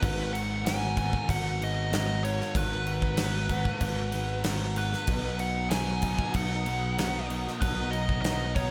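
A gated 80s drum kit with bright cymbals, a tight kick and a medium-tuned snare opens this wistful, dreamy shoegaze and dream pop rock excerpt at 95 BPM, alongside a round picked bass, a thick fuzz guitar with lush chorus sitting in the background, a lo-fi electric guitar through a small old amp trailing reverse reverb, and a nasal lead guitar with a parked wah and analog delay carrying the melody, while a hollow, flute-like soft pad enters at 5.1 seconds as the harmony moves from G#m9 to Bmaj7.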